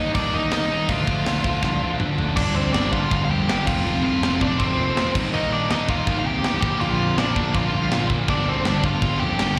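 Urgent and raw, this punk rock excerpt at 162 BPM in G minor puts a dark, nasal lead guitar with a parked wah up front on the melody over two background riffing guitars, one bright and distorted and the other sludgy with slapback echo, plus a growly fuzz-picked electric bass and a tight metal drum kit with a gritty, rolled-off top whose fill at 1.6 seconds leads into a Gm, F, Eb, Bb progression, captured as a live gig through the venue's PA in recital hall reverb.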